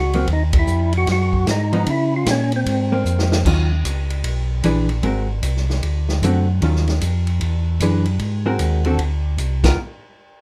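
A fat, lightly overdriven tonewheel organ melody with percussive attack and slow rotary speaker opens over a round, dark organ bass with key click, then falls away at 3.0 seconds, leaving that organ bass, a dark, fingered hollow-body guitar and a distant, roomy vintage drum kit with a punchy kick to carry this greasy, soulful soul jazz organ trio excerpt at 152 BPM, swinging through Ebm9 and Ab9 changes after a drum fill at 3.1 seconds.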